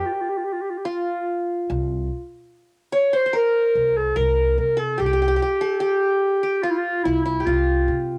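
In a straight 4/4 at 73 BPM, this short cut from a longer Turkish makam ensemble piece in C makam hicaz has a warm, festive mood, opening with a break where a mellow, distant, roomy clarinet in classical style carries the melody over a bright-edged qanun played with fingerpicks, its triple strings ringing through the cassette tape colouring on both parts. At 1.7 seconds a woody, dark pizzicato upright bass on steel strings enters beneath them, and the three parts continue together to the end near 8.2 seconds. The home cassette recording sits in light reverb, with all three players up front.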